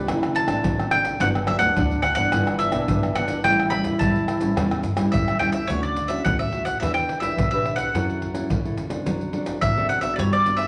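A bright, up-front bowl-back mandolin carries the melody in this lively, joyful samba and choro excerpt at 107 BPM in D major. It opens over thumb-plucked classical nylon-string guitar, a woody pizzicato upright bass and a close-miked, vibrato-laden trombone whose jazz-style second line sits in the background until 5.4 seconds. Maracas, deep surdo, pandeiro and tamborim played with hard hands drive things from 0.1 seconds, and a large studio reverb bathes the ensemble.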